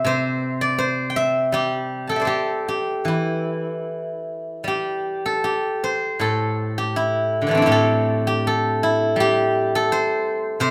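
Pastoral and flowing, this short passage of Chinese traditional music features a solo steel-string zither played with fingerpicks, moving in a free rubato 4/4 at roughly 73-86 BPM in the G zhi mode. The zither sits up front, its silvery, ringing tone spanning A2 to A5 across the full 10.7 seconds. A moderate recital-hall reverb lends the acoustic instrument an open, airy setting in this fragment of a longer piece.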